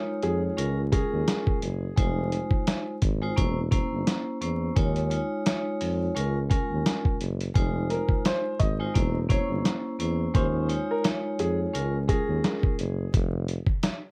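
A boom-bap hip-hop groove at 86 BPM in 4/4 swings its sixteenths, driven by a dusty, sampler-style drum kit whose thumpy kick, medium-tuned snare and hi-hat sound compressed, overdriven and re-recorded in a small room, sitting up front with a gritty, tough edge. Underneath, a dark, close-miked tuba carries the bass line in a jazz style, its notes scooped and touched with light vibrato. A vibraphone struck with hard mallets, motor off, rings out bright and metallic chords over a cycle of Eb9sus4, Db6, Fm7 and C7b9/E. A clear, woody upright piano with a vintage, short-sustained tone adds brief melodic phrases with a touch of delay, first near the start and again from about 7.9 seconds. Light reverb, worn cassette tape with warbly pitch drift and vinyl crackle give this short cut from a longer piece its aged, hazy character.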